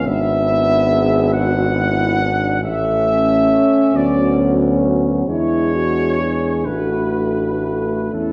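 Classical brass band music in a hymn-like vein, this lyrical excerpt moves slowly in 6/8 at around 39-48 BPM, counted in dotted quarters, with a flexible, rubato feel. Up front, a mellow trumpet section carries the melody with a soft attack, a smooth top and light vibrato, while a French horn section sings a second line just beneath it. A euphonium and a close-miked trombone sit in the background as accompaniment, and a roomy, distant-sounding tuba anchors the bass from the front of the blend. All five parts play together from start to finish over a chord progression that begins on E7/G# and settles through A, Bm/D and E7 before closing on Bm7/A. A generous scoring-stage reverb with a 1.6-second decay wraps the band in a dark, warm production that suits the lyrical character of the phrase.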